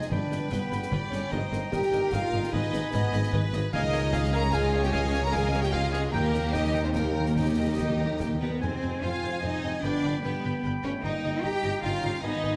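A heroic, adventurous film-score passage in a brisk 3/4 at 149 BPM opens with the full orchestra at once, lush vibrato violins carrying the melody over a clear clarinet, oboe, hollow flute and second violins, dark distant French horns holding chords, bright ringing harp arpeggios, and a low end of smooth cellos, woody double basses and a very quiet mellow tuba, while snare, bass drum and dark cymbals drive the first 8.4 seconds and articulate hard-mallet timpani add a fill from 6.1 seconds, all set in a moderate scoring-stage reverb.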